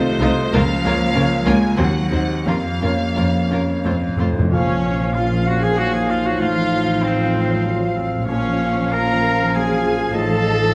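Passionate and brooding, this excerpt from a romantic movement for piano and orchestra in Bb minor sways in rubato 3/4 at 84-102 BPM, with an open, long-sustaining baby grand piano up front carrying the melody over veiled, con sordino strings (violins on melody and a second line, violas, cellos and double basses), until a timpani fill at 3.9 seconds opens the second section at 4.5 seconds, where a bright flute group, oboe and bassoon join alongside dark, very quiet French horns and clear, distant trumpet stabs, with a mellow clarinet following at 5.2 seconds, all bathed in a wet recital-hall reverb.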